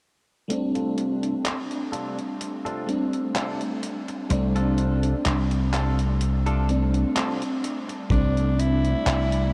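Woozy and faded, this vaporwave excerpt drifts at 63 BPM in 4/4 with a light swing on the sixteenths, tuned to A4 = 441 Hz. A lush, detuned FM electric piano with a soft pad layer carries the accompaniment through ensemble chorus and delay over an F6/C chord. A clean, twangy electric guitar, recorded direct, plays a picked riff under a low-pass filter sweep, subtle chorus and delay. A detuned 8-bit drum machine adds overdriven, sampler-style handclaps and hi-hat that sound re-recorded in a small room, and a punchy, up-front slap bass enters at 4.3 s on C2. After a short break, the music moves at 8.1 s to a Gsus24 chord: a raspy, gritty tenor saxophone with vibrato takes the melody through tape echo, and a dry, tight acoustic kick drum sounds briefly. The mix is soaked in a huge ambient reverb and cassette-tape grain, giving it a dreamy haze.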